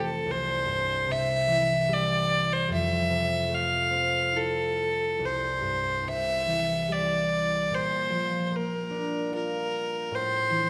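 A moderate scoring-stage reverb frames this longing, mournful Celtic slow air at 73 BPM in a rubato 3/4, where a single bowed fiddle, rich, biting and earthy, carries the melody up front over a thumb-plucked concert harp whose ringing accompaniment moves through C, Fmaj7, C, Bb and Am across this 10.7-second passage cut from a longer piece.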